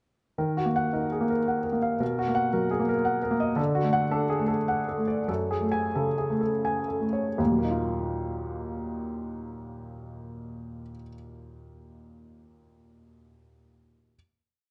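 Moderate concert hall reverb surrounds an up-front baby grand piano, and the sound is mellow and rounded at the top. This reflective, intimate neoclassical minimalist miniature in 3/4 is played solo with a rubato feel: warm, rocking broken chords are paired with a second figure, slowing between 2.8 and 7.4 seconds. At 7.4 seconds the piece settles onto a final Ebmadd9 chord that rings until 11.9 seconds.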